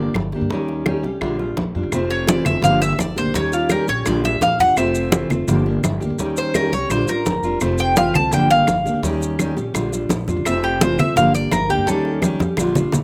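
A metallic, double-strung Cuban tres takes an up-front arpeggiated solo over a full-bodied fingerpicked steel-string guitar with audible finger squeak, a dark, thumpy gut-string upright bass, ringing hard-handed congas, tight high-tuned bongos and woody claves in the background, and grainy maracas that join at 1.9 s, in this danceable, dry-sounding Cuban son and guajira excerpt at 169 BPM, which cycles Gm, Eb7, Bb6 and Fmaj7 before a drum fill arrives at 12.2 s.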